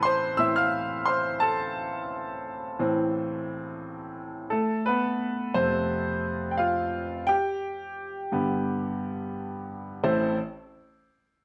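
This pop piece for solo concert grand piano, cut from a longer work, has a driving yet bittersweet mood at 87 BPM in 4/4, with a light swing on the sixteenth notes. Set in A minor, it moves from an Am opening to F at 4.5 seconds, then through G before settling back on Am near the close. The piano covers a broad span from A1 up to F6, with a clear, open tone and a deep bass. It sits up front in the mix, surrounded by a moderate large-studio reverb that gives the sound a sense of space. The piano plays alone throughout, its part running until 10.4 seconds.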